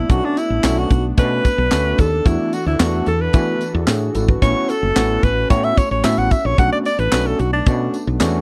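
A clear, close-miked alto saxophone with vibrato and slapback echo solos up front over a danceable, slick early-eighties boogie funk groove, backed by a tight funk drum kit with handclaps and a high-tuned snare, a growly, round fretless electric bass, a barky, overdriven tine electric piano, a very quiet brassy analog pad sustaining chords, and a jingly tambourine in the background, all in a dry, close 1970s-style studio sound.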